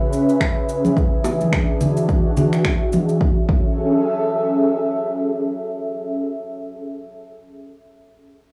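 Hypnotic and meditative, this short organic downtempo excerpt in F# minor at 107 BPM sets a soft, breathy, detuned pad with chorus, cassette-tape grain and sidechain pumping, sustaining chords from C#m7 through E9 to F#m9 up front across the whole 6.2 seconds, while a punchy electronic kick, a layered electronic shaker with finger snaps, and acoustic congas and bongos played with hard hands swing on the sixteenths in a moderate studio reverb until the percussion drops away by 3.7 seconds.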